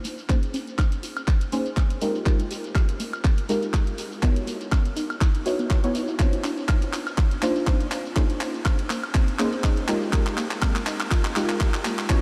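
This deep house passage at 122 BPM opens on a build-up and drum fill, with dark, detuned chord stabs and a soft, round pluck arpeggio in the background, both given chorus, sidechain pumping and filter sweeps, plus analog delay on the stabs and tape echo on the pluck, over handclaps, hi-hat and woodblock and a grainy, mellow shekere. A punchy, up-front electronic kick enters at 0.3 seconds, driving a swung sixteenth-note groove beneath minor eleventh chords moving through Bbm11, Fm11, Dbm11 and Cm11. The whole mix is soaked in a huge ambient reverb, giving the deep, warm mood a dreamy haze.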